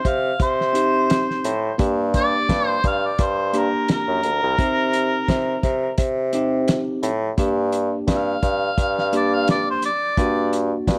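Brooding and smoky, this brief cut from a longer straight-eighth soul blues sets a mellow, scooped harmonica melody with light vibrato over a dry, muffled drum kit with a fat snare and tight kick, a clear, soft-attacked bassoon carrying the bass line, and a bell-like tine electric piano, heard through built-in speakers, entering at 0.7 seconds, all moving between minor chords in a small, lightly reverberant room.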